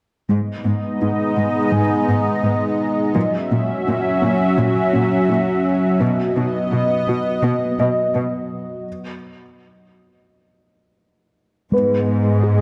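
Cinematic music at 84 BPM in G# minor, vast and futuristic, built on an up-front, thick, detuned sawtooth pad holding lush sustained chords with chorus. Alongside it, a very quiet, tight synth spins driving filter-pluck arpeggios, while a bowed symphonic cello section carries the bass with smooth vibrato. A warm grand piano adds delayed texture from 1.7 s, and a moderate scoring-stage reverb surrounds the progression from G#m through F#7 and B until a break at 8.9 s, before G#m returns at 11.7 s.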